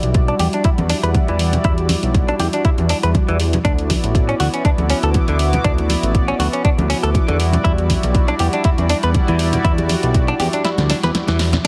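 A lightly swung 16th-note groove at 120 BPM in 4/4 drives this sunny, groovy nu-disco excerpt, where a punchy, up-front electronic kick and a layered house kit of snare, bright hi-hat, shaker and crash sit over a fat, detuned sawtooth bass with a filter sweep, while a mellow, slow-attack pad with chorus and delay holds Em9 and D69 chords, a clean, direct-recorded electric guitar riff enters at 0.3 s through lush chorus, low-pass filter and delay, soft-handed congas ring in the background, and the kick drops out at 10.6 s for a drum fill, inside a heavily compressed, radio-like mix with light digital ambience.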